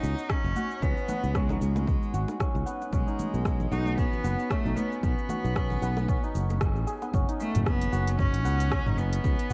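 A swung sixteenth-note groove at 114 BPM in 4/4 drives this meditative, hypnotic slice of organic downtempo, cut from a longer piece and set in a dark production with light reverb. The organic electronic drum kit lays down crisp hats alongside cabasa, rim click and toms, joined at 0.3 seconds by a punchy, layered electronic kick with overdrive. Congas and bongos, acoustic and tucked into the background of a small room, play from 0.6 to 7.1 seconds. Up front, a growly, direct fretless electric bass sustains low notes under a sidechain pumping effect, while a hammered santur rings out shimmering, mellow arpeggios. A single distant cello carries the bowed melody with focused vibrato, and both the cello and santur are coloured by vintage 12-bit sampler grit and delay over a harmony moving from B through C#5, with the whole band accenting at 6.6 seconds before a shift to F#5 at 7.1 seconds.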